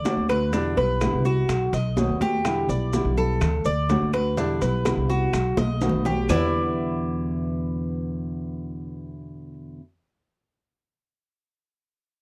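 This sultry excerpt of Cuban son and guajira opens with three parts up front: a full-bodied, fingerpicked nylon-string guitar, a bright, metallic Cuban tres playing picked arpeggios on its doubled strings, and a pizzicato upright bass with a woody, steel-strung tone. A moment later the percussion joins at a moderate, straight 4/4 pace. The congas are high-tuned and thin-skinned and the timbales ring with a metal shell, both in the background, alongside tight, very quiet bongos, woody claves and grainy, mellow maracas. The harmony circles between D, Em7 and B7, and a drum fill leads from the opening section into a second at 6.3 seconds. The percussion stops at 6.4 seconds, leaving the guitar, tres and bass to carry on alone in a dry, close 1970s-style studio sound with light reverb and a warm glow.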